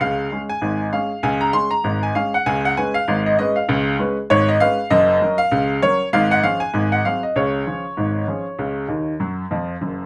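Jaunty and playful, this brief ragtime excerpt in a lightly swung 2/4 features a solo upright piano, woody, worn and slightly out of tune, with long sustain, heard up front in a booth's moderate ambience, ranging from deep bass to bright treble before a short fill from 8.9 seconds.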